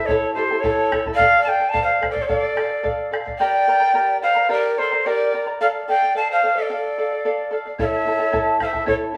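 A straight 2/4 pulse at 109 BPM drives this short cut from a longer Andean folk piece in D harmonic minor, its mood both wistful and festive. Up front, a cane quena carries the tongued melody with a bright, airy, straight tone. Beneath it, a breathy, hollow set of large pan pipes plays a second line with vibrato and a touch of chiff. A fingerpicked charango, also up front, fills out the accompaniment with shimmering double strings, some doubled at the octave. The deep, dry bombo sounds from 0.1 s to 3.4 s, drops out, and returns at 7.8 s, while the ensemble, playing live in one room with a wet studio reverb, moves through A, Dm and Gm across two statements of the same section.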